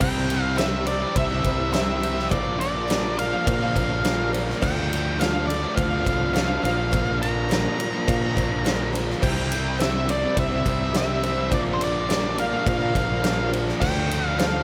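A straight 4/4 groove at 104 BPM drives this brooding, swaggering classic rock excerpt, cut from a longer piece, with a big rock drum kit up front, its punchy kick, medium-tuned snare, ride and crash ringing in a natural big-room sound, while a very quiet metallic cowbell sits underneath. A growly fuzz fingered electric bass, overdriven and amped, anchors the chords as they move from C to Bb to Dm and back. Two picked electric guitars play riffs in the background: one crunchy and overdriven with slapback echo, the other a raw, lo-fi garage tone that also carries overdrive and slapback echo. Over them an octave-fuzz lead guitar carries the melody with a dark, distorted edge and tape echo. A very quiet, shimmering octave-doubled twelve-string acoustic and an intimate, woody upright piano with audible action noise add accompaniment, all of it set in a lush hall reverb that gives a big arena sound.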